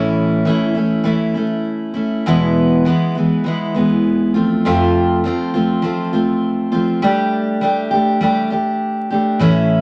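A full-bodied, up-front picked steel-string acoustic guitar plays alone in this jangly, open-road rock excerpt at 101 BPM in a straight 4/4, moving through A, E, F and Gsus2 over a range from E2 to G4, set in a moderate studio reverb with a layer of vinyl crackle.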